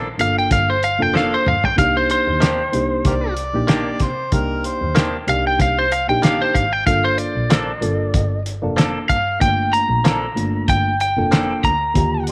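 Twangy, direct-recorded stabs from a clean electric guitar with slapback echo open this smoky, soulful soul-blues fragment alongside a dark, woody bowed double bass, then a slightly broken-up lead guitar carries the melody up front. A worn, reedy electric piano with overdrive and phaser accompanies, a muffled, cloth-damped drum kit with a fat snare plays a fill at 1.1 s, and a gritty amplified harmonica adds a scooped, tongue-slapped second line between 3.1 and 5.1 s over a Cm9 chord.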